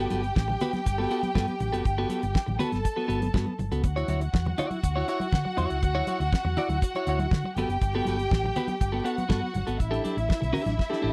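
This danceable, glamorous disco clip, cut from a longer piece, features a damped 1970s drum kit with an airy, polished sound, a fat snare, a tight kick and hi-hat, all with a rolled-off top and placed up front in a straight 4/4. Alongside it, a hollow-body short-scale electric bass is played with the fingers, its amped tone dark, round and punchy. A clean, picked electric guitar supplies compressed accompaniment up front, while a lush studio violin section carries a bowed second line with vibrato and an even, smooth top. Congas with a thick skin, played with soft hands, sit damped and medium-tuned in the background. The harmony moves from Gmaj9 to Dmaj9 and back, turning to A7sus4 at 9.8 seconds before a drum fill at 10.8 seconds. The close, dry 1970s-style recording carries little reverb and shows some lossy compression artefacts.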